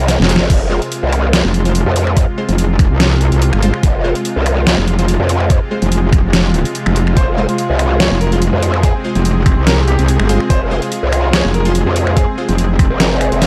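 Heavy and aggressive, this heavy wobble dubstep cut from a longer piece runs at 144 BPM in a half-time 4/4 feel with a light swing, sitting in F minor on an F minor chord. A brief drum fill from 0.1 seconds gives way to the drop at 0.5 seconds, where a knocking, tape-warm electronic kick and an overdriven dubstep kit with a deep snare, bright hats, finger snaps and crash sit up front in a small room ambience. Two basses dominate the low end: a growling, saturated growl bass shaped by a formant filter with chorus and overdrive, and an even louder metallic FM wobble bass, also chorused and overdriven. Behind them, a lush, detuned sawtooth supersaw pad holds sustained chords with sidechain pumping, while bold, punchy orchestra-hit-like synth stabs with a noise layer and filter sweep decay into reverb and dub echo. At 7.2 seconds a brilliant, polished concert grand piano enters with a melody carried by dub echo. 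The production is dark with light reverb overall.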